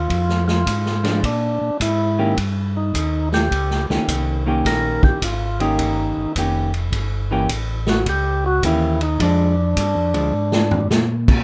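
A light reverb gives this short soul jazz organ trio excerpt its space, with a greasy, swinging mood at 106 BPM in 4/4 and a 66% swing on the eighth notes. A percussive tonewheel organ carries the solo melody between D4 and Bb4, its full, clean voice marked by second-harmonic percussion, key click and a slow rotary speaker. Underneath, a mellow tonewheel organ plays the bass from F1 to Bb2, round and dark with its own key click and slow rotary. A hollow-body jazz guitar enters at 1.0 seconds with clean, picked accompaniment, while the big-band drum kit sounds distant and roomy in a studio room, with dark cymbals, a medium-tuned snare, a punchy kick and a rolled-off top. The harmony moves from Fm through Bb7 and Eb7 to Edim7 and back to Bb7, and a drum fill at 10.3 seconds closes out the solo line, which ends at 10.9 seconds.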